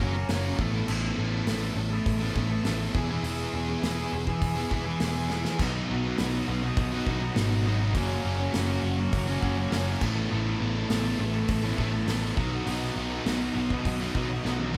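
Quiet-loud alternative rock at 102 BPM with a restless, anthemic mood, this excerpt sets a sludgy, overdriven guitar riff up front beside a bright, tight distorted guitar, a growly picked electric bass and a loose indie drum kit with a pumping small-room sound and drum fills at 5.3 and 14.4 seconds, while a doubled, compressed fuzz guitar joins in the background at 5.6 seconds and a very quiet, lush, distant string section holds bowed chords with vibrato, all captured as a band playing live in one room with light reverb over changes through F#, Asus2, E and B.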